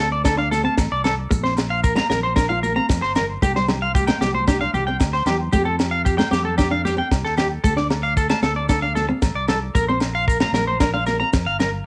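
Highlife guitar band music at 114 BPM in a straight 4/4, sunny and warm in mood, tuned slightly flat to A4 = 437 Hz, with the sound of a home recording on cassette. Up front, a twangy electric guitar at the edge of break-up plays arpeggios through analog delay and plate reverb, over a dark fingerpicked steel-string acoustic with audible finger squeak and a round, direct fingered electric bass. A tight, dry funk kit with a high-tuned snare enters at 0.2 seconds, joined by ringing agogo bells, grainy distant maracas and very quiet thick-skinned congas, as the chords cycle through D5, Bbsus2, C5 and Fadd9 in this cut from a longer piece.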